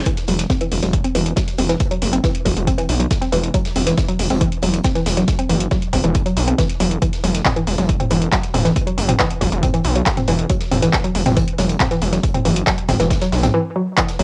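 A gritty, distorted sawtooth synth bass with sidechain pumping drives this intense, industrial peak-time techno excerpt at 138 BPM, alongside a woody wave-folded pluck riff carrying chorus, overdrive, 12-bit sampler grit and analog delay, a punchy up-front electronic kick, a techno kit of handclaps, metallic hats, shaker and toms, and a very quiet acoustic kit of hi-hat and snare played with bundle sticks, all in a moderate studio reverb with cassette-tape colour on the pluck, kick and techno kit, before a brief break at 13.5 seconds.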